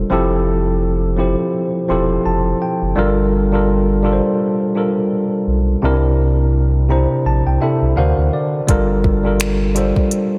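A dreamy mix soaked in church reverb frames this sensual, moody contemporary R&B excerpt, cut from a longer piece and set to a swung sixteenth-note feel. A worn, slightly out-of-tune tine electric piano, lightly overdriven and heard up front as if through built-in speakers, carries the chords from Fmaj7 through Gm9, C9 and D7alt and adds fills, the first from 1.5 to 3.0 seconds, while a deep, thick, saturated sub bass holds the low end. An electronic drum kit with soft kick, smooth hats and finger snaps arrives up front only at 8.7 seconds, just as the harmony returns to Gm9.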